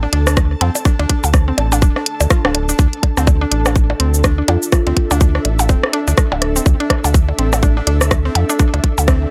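An overdriven electronic kick drum sits up front with a tight, layered punch, driving this quirky, cool minimal techno excerpt at 124 BPM in 4/4 with a 16th-note swing. Beneath it, a round, deep analog bass holds a dark, sustained low end, while a woody, mallet-like synth pluck repeats a short riff through chorus and digital delay, both breathing with sidechain pumping. An ethereal, airy pad drifts behind them with a slow attack, ensemble chorus, tremolo and built-in reverb, lending a mellow haze over a D5 chord. A gritty garage drum kit of cabasa, hi-hat and rim click joins alongside electronic percussion blips and rim click echoing through digital delay. Around 4.5 seconds, a kalimba plucks a single brief, boxy note in the background, caught in its own delay, all within a light reverb.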